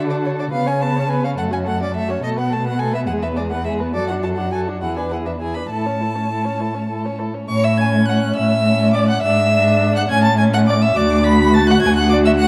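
A lively, cheerful classical-period movement for string quartet in 6/8, heard as a short cut from a longer piece in which the opening phrase begins again at 7.5 seconds. The first violin carries the melody with a rich, smooth and even vibrato tone, while the second violin adds an expressive second line with portamento, sounding somewhat distant. The viola fills in the accompaniment with a warm, smooth and even sound, and the cello anchors the bass up front with expressive portamento, all set in a moderate scoring-stage reverb with a dark production.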